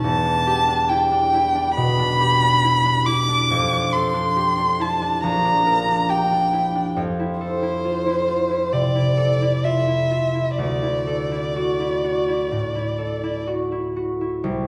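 Impressionist classical music for violin and harp, dreamy and luminous, drifts in a free rubato 4/4 at roughly 61-72 BPM, tuned to A4 = 438 Hz and cut from a longer piece. A single close, warm bowed violin carries the melody with vibrato, soft attacks and expressive portamento until 13.4 seconds, while the fingerpicked concert harp rings out beneath it through Em7, F69, Bb6, Fmaj7 and Dadd9, continuing alone until 14.7 seconds. Both instruments sit up front, yet a wet recital-hall reverb places the listener further back in the room.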